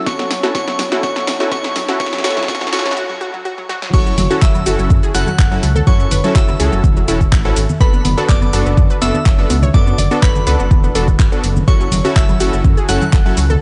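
A straight 4/4 pulse at 124 BPM drives this dreamy, emotional progressive house passage in F# minor, where an up-front overdriven kick and an overdriven deep house kit with a punchy snare, claps, hi-hat, shaker and crash carry a build-up of crystalline FM bell melody, round chorused analog pluck arpeggios and airy, pumping supersaw stabs, with a very quiet riser at 1.4 s before a brief break, then the drop at 3.9 s brings a rumbling detuned saw bass, joined moments later by background congas, cowbell and woodblock, inside a dark production with light reverb.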